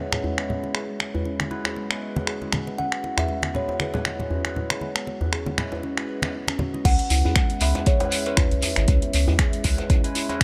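Light reverb and a small-room ambience frame this earthy, swung afro house piece, where two woody, ringing kalimbas carry a dub-echoed thumb-plucked melody and low-pass-filtered, sidechain-pumped arpeggios over phased, dub-echoed stabs from a barky tine electric piano through a combo amp, swept by a filter, and a very quiet, detuned analog pad holding moody chords. An up-front afro-pop kit of finger snaps, metallic hats and crash, all low-pass filtered, plays alongside a soft-handed djembe and close, dry congas. At the drop at 6.8 seconds the congas stop as a deep, layered electronic kick, a round, pumping analog bass and a grainy, mellow shekere come in.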